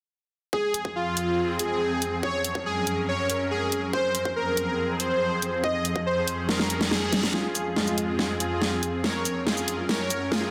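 A soft, smooth supersaw melody with cassette-tape grit and digital delay opens this aggressive, chaotic heavy wobble dubstep cut alongside a punchy electronic kick, heard in half-time at 141 BPM in F phrygian. They are joined almost at once by a layered drum kit with a huge, up-front snare, hi-hat and shaker, and a bright, morphing wavetable pad that pumps under sidechain with ensemble chorus. Over chords moving between Fm, Gb and Db/F, a drum fill arrives at 6.5 seconds, the kick drops out at 6.9 seconds, and a very quiet reverse cymbal and riser lead into a build-up from 7.3 seconds. The mix sits in a wet digital room reverb and carries a dense, heavily limited modern master.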